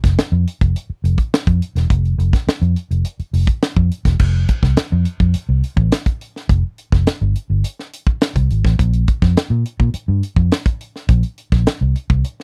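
A dark, foam-muted fingered electric bass with a round, punchy tone sits up front alongside a tight acoustic funk kit of crash, hi-hat, high-tuned snare and tight kick in this energetic, straight-feel funk cut from a longer piece, captured as a dry, close 1970s-style studio recording with a shift into a new section at 4.2 seconds.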